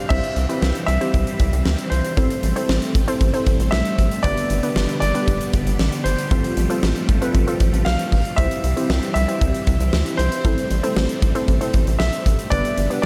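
Synth-pop at 116 BPM in C major, nostalgic and bright, where a brilliant grand piano melody with analog delay rides over lush phased string-machine chords, a warbling lo-fi pluck with chorus, a rubbery square-wave bass and a punchy, up-front arena drum kit with a fat snare, all cycling through C, Am7, G and Fadd9/A in a dreamy mix soaked in huge ambient reverb, cut from a longer piece.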